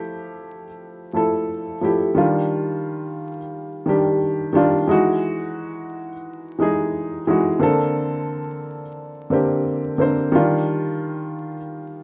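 A dark, woody upright piano plays alone for the full 12 seconds, sitting up front with audible action noise, short sustain and a low-pass filter softening its tone as it moves through lush major-ninth chords from Fmaj9 to Ebmaj9, Emaj9 and Bbmaj9. The feel is a cosy, dreamy hip hop groove with a relaxed swing on the sixteenths. A small, reverberant room and vinyl crackle give this fragment of a longer piece the rough, intimate character of a home demo.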